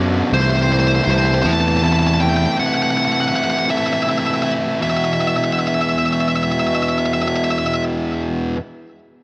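A fuzz guitar riff and a growly, overdriven picked electric bass open this short rock excerpt together. The bass drops out at 2.5 seconds, and the compressed, bright guitar riff continues beneath the lead. A dark, distorted lead guitar enters at 0.3 seconds with a high melody run through digital delay, and it sits as far forward as the riff. The music moves at a slow 54 beats per minute in a straight 6/8, counted in dotted quarters, and its mood is melancholic yet cathartic. The harmony rests on Am/C before shifting to E5 at 4.8 seconds, where a new section begins. Light reverb and the ambience of a small room give the fuzz-heavy parts an intimate, close sound.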